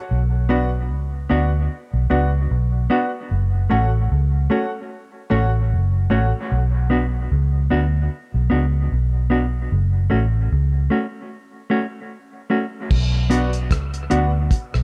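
A round, foam-muted, punchy fingered electric bass anchors this spacious, deep dub reggae excerpt, joined by a clean, fingered electric guitar carrying tremolo and dub echo, a grand piano placing long-sustained stabs through dub echo that stop at 6.3 s and return briefly near the end, and a cloth-damped, thuddy drum kit with a tight kick, rim clicks, hi-hat and crash arriving only at 12.9 s after a break, all heard in a small room with a dark, warm production.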